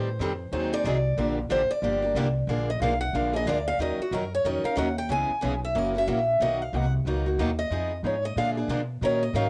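Cassette home-recording intimacy with moderate studio reverb frames this bittersweet, virtuosic gypsy-jazz excerpt at 184 BPM, where a bright, boxy parlour-guitar lead solos throughout over a second up-front picked guitar, a softer background guitar with audible finger squeak, and a woody, thumpy gut-string upright bass, the changes settling into Eb minor at 3.8 seconds.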